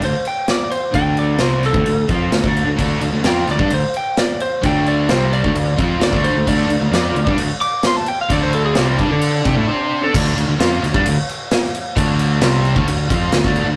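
A twangy, slightly broken-up lead guitar with analog delay plays a solo over the first 10.1 seconds of this driving, menacing hard rock excerpt, backed by a crunchy overdriven rhythm guitar, a scooped high-gain guitar riff and a double-tracked distorted guitar that joins at 2.8 seconds. Underneath, a growling fingered bass with overdrive and a punchy, up-front rock drum kit with crash cymbal keep the straight 4/4 pulse. When the solo and crunchy guitar stop at 10.1 seconds, the heavier guitars, bass and drums carry on into a new section, all in a rough rehearsal-room sound with tube saturation and a small room reverb.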